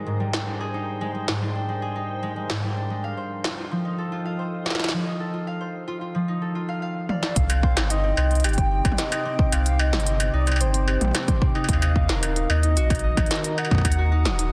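Densely limited and lightly reverberant, this eerie, melancholic IDM excerpt in C minor at 111 BPM opens with a dark, glassy FM pad under a filter sweep in the background and ringing, fingerpicked harp arpeggios trailing dub echo, while an up-front industrial kit of clanging snare, crisp hats, struck metal and toms drives on throughout; a drum fill at 7.1 seconds brings in a warbling, nostalgic lead with vibrato and tape echo, then at 7.4 seconds a round sine sub bass and a heavy, tape-warm electronic kick join.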